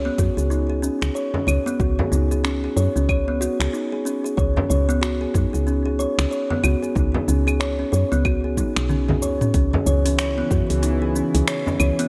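A round, dark FM bass opens this hypnotic organic downtempo excerpt, pumping under a bright, ringing kalimba whose hollow-box arpeggios trail through a digital delay. A deep, layered electronic kick, an afro-pop kit of claves, finger snaps, metallic hats, shaker and toms, and a close frame drum played with soft hands join almost at once in a swung 4/4 groove. After a drum fill at 8.6 seconds, an airy, detuned pad with chorus and its own sidechain pumping enters with a slow attack at 9.5 seconds, all in a dry mix with little reverb.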